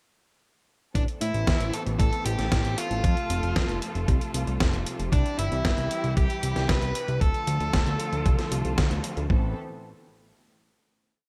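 Italo disco with a bittersweet, nostalgic mood, this complete piece moves through a single verse before settling on a final chord at 9.3 seconds. A muted studio string section enters at 0.9 seconds, bowed con sordino with vibrato and a soft attack, holding veiled, sustained chords low in the mix. A thick, detuned analog bass drives a sequenced sixteenth-note line with a fast filter pluck and tube saturation, while a thumpy, gritty electronic kick lays down a four-on-the-floor pulse. A compressed sampler-style kit adds a fat snare and closed hi-hat in a disco machine beat touched with gated reverb. Above them, a dark, overdriven electric lead guitar plays picked, song-like motifs through delay, its phrases running until just before a band accent at 8.8 seconds. The harmony moves from Amadd9 through F, C and Dm before returning to Amadd9, and the mix sits in a digital ambience.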